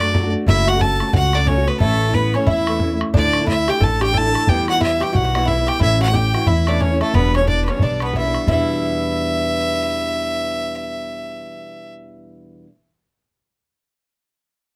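Celtic folk hornpipe in E dorian at a driving, spirited 180 BPM, swung in 4/4, with a clear, biting fiddle up front carrying the melody with light vibrato over a mellow, metallic Irish bouzouki second line. A dark, boxy fingerpicked parlour guitar and a woody pizzicato upright bass underpin chords moving through F#m, A, Dsus2 and Em, while a boomy bodhran drives the rhythm until 8.7 seconds. Close, detailed microphones and light reverb give the excerpt an intimate, intense presence.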